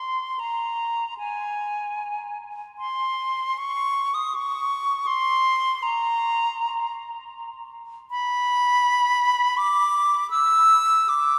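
Classical and expressive, this nostalgic, serene excerpt features a solo silver concert flute, pure and metallic with vibrato and soft attacks, singing up front between Ab5 and E6 for 11.4 seconds inside a cathedral-like church or hall reverb that lingers for 5.2 seconds.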